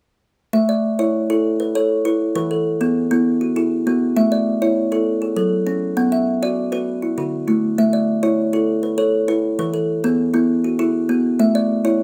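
This southern African traditional piece, cut from a longer performance, has a rippling, warm mood at 133 beats per minute in 12/8 with a straight feel, in A major. A lone kalimba carries everything from 0.5 to 12.0 seconds, spinning continuous arpeggios across a range from D3 to F#5. Its thumbnail-plucked tines sound woody and bright, with a hollow box resonance and a ringing sustain. The instrument is close-miked and sits up front, full and dry in itself, while the room adds a moderate studio reverb. The harmony moves from A to E and back to A, then passes through F#m, Bm and D before returning to A, E and A.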